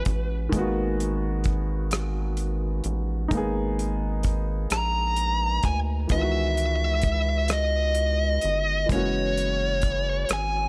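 An echo-heavy studio mix carries this yearning, late-night slow R&B excerpt in 6/8 at 43 BPM in G# minor: a rubbery, hollow square-wave bass and a worn, long-sustaining baby grand piano carry the harmony through chords like G#m9 and C#m11, a dry 70s drum kit with a tight kick plays hi-hat, kick and rim click, and a dark, compressed fuzz lead guitar with distortion and analog delay sounds briefly at 0.0 seconds before taking up the melody from 4.7 seconds.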